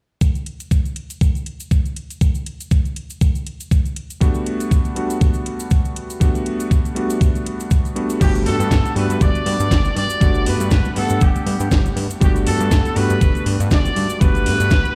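Feel-good and sunny, this nu-disco excerpt moves at 120 BPM in G major with a light sixteenth-note swing. It opens on a Gmaj7 with a thumpy, overdriven electronic kick up front, a layered house kit of cracking snare, metallic hi-hats and crash cymbal re-recorded in a large room, and a cabasa of tube shaker and group handclap sitting in the background, joined at 4.2 seconds by a vintage electric grand piano with clangy lows and long sustain that pumps against the sidechain and trails a delay. From 8.2 seconds a fat, detuned sawtooth analog bass with a filter pluck sits up front while a tight, clear trumpet section carries the melody with vibrato and digital delay.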